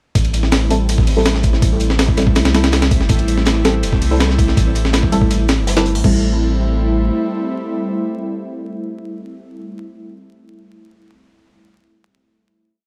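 A heavily chopped, pitched-up sampler-style breakbeat with a thumpy kick drives this atmospheric, frenetic drum and bass and jungle piece at 163 BPM in A minor, joined by a dark, saturated looped break in the background, a deep, round dub sub bass with long gliding notes, an airy, breathy detuned pad on an Am7 chord, and sparse mellow chord stabs treated with phaser and dub echo, in a gritty hardware recording with vinyl crackle, until the drop ends at 6.0 s and a final chord rings out.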